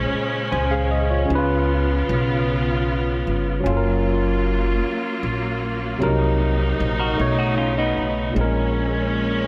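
A bright, barky tine electric piano carries the accompaniment in this sultry, yearning slow six-eight R&B fragment at 51 BPM, joined by lush, bowed studio strings holding smooth sustained chords and a woody pizzicato upright bass, while a dark, hollow-body electric guitar with tape echo slips in a brief second line at 7.0 s over a Bbm9 to Gbmaj7 to B9 progression in light studio reverb.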